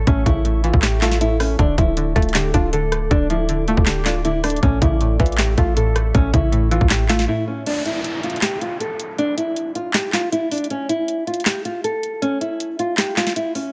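Half-time trap drums at 158 BPM, with a hard-clipped kick, sharp snare and bright overdriven hats from a small room, drive this dark, hard-hitting hip hop fragment, where a fingerpicked nylon-string guitar carries the melody over a twangy, phased resonator pluck, a detuned sawtooth pad sitting in the background and a deep, boomy 808 bass, until the chords stop at 7.7 seconds and a downlifter sounds through a break held by guitar and drums.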